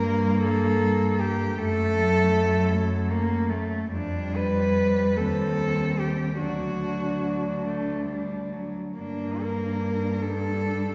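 A short, elegiac passage cut from a longer classical piece for cello ensemble unfolds in a yearning, rubato 6/8, with an up-front solo cello singing the melody in a breathy, soft-attacked sul tasto tone over a dark, woody second cello line, a gentle inner accompaniment cello and a close, intimate bass cello, all bowed with vibrato and heard from further back in a wet concert hall, as the harmony drifts from Gm through F#m, G7/F, Cm/Eb and D before returning to Gm at 9.0 seconds.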